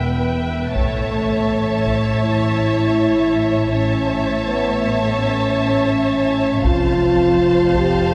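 Epic orchestral film score at 82 BPM, relentless and grand, built on mellow French horn chords up front over bowed strings with vibrato (rich violins carrying the melody, focused violins on a second line, distant violas, and a deep bass of double basses with soft-attack cellos in the background), while a dry, close taiko ensemble strikes with heavy sticks from 0.8 to 2.2 seconds and again from 6.6 seconds, all moving through Em, A and F in the long, wet reverb of a cathedral-like hall in this fragment of a longer piece.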